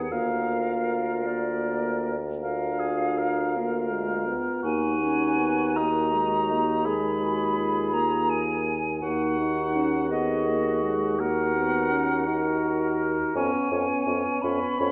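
Elegiac and yearning, this slow romantic movement for wind quintet unfolds in E-flat minor at 54 beats per minute in dotted quarters, its 12/8 lilt stretched by uneven beats and rubato, and tuned slightly high to A4 = 443 Hz. A silver concert flute carries the melody up front with a pure, metallic tone, tongued notes and vibrato, while a mellow oboe sings a soft-edged, lightly vibrant second line that sits distant and roomy behind it. Beneath them, a present French horn and a vintage-sounding clarinet in the background fill out the accompaniment, and a bassoon anchors the bass close to the listener with a light vibrato of its own. All five instruments play together for the full 14.9 seconds, moving from Bb/D through E-flat minor and Bb5/Eb back to E-flat minor before settling on Db7/F near the end. A wet concert hall reverb with a two-second tail wraps the ensemble, lending the cut-off passage a spacious, sorrowful glow.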